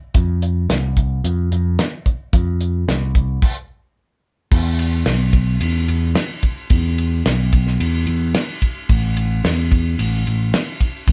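A straight 4/4 groove at 110 BPM drives this dark, hypnotic slice of psychedelic rock, tuned to A4 = 443 Hz, with a damped 70s drum kit of dry, fat snare, tight kick, hi-hat, ride and crash, sitting up front beside a round, amped picked electric bass moving between A1 and F2. The same section is played twice, interrupted by a stop from 3.4 to 4.5 seconds before the band picks the pattern back up. It sounds like a band playing live together in a small room with a moderate reverb, cut from a longer piece.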